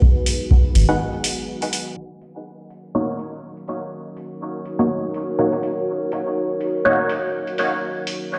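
A dark, detuned analog pad with chorus and a dry, deep kick open this cavernous, hazy dub techno fragment at 123 BPM in Eb minor, with metallic hi-hats entering at 0.3 s, a round sine sub bass arriving up front at 0.8 s, and a muted, evolving sawtooth chord stab soaked in phaser and dub echo joining at 0.9 s, the pad, bass and stab pumping to the sidechain as the chords move from Abm7 to Ebm7 through a break and filter sweeps, heard through a lush hall reverb and the stone echo of a bare room on a big sound system.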